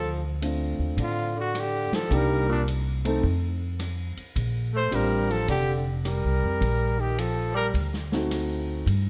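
A clear, forceful trumpet carries the melody up front with light vibrato and scooped notes, while a breathy, mellow tenor saxophone plays a second line from a more distant, roomy position until both stop at 7.7 s. This is a sophisticated small-group swing and bop excerpt at 106 BPM in 4/4. A woody pizzicato upright bass sits up front and rings on to 9.1 s, joined at 0.4 s by a concert grand piano with deep bass and a natural-sounding big-band drum kit with dark cymbals and a punchy kick, all inside a moderate large studio reverb over chords moving from Dm7 through Bbsus2 to D7b9.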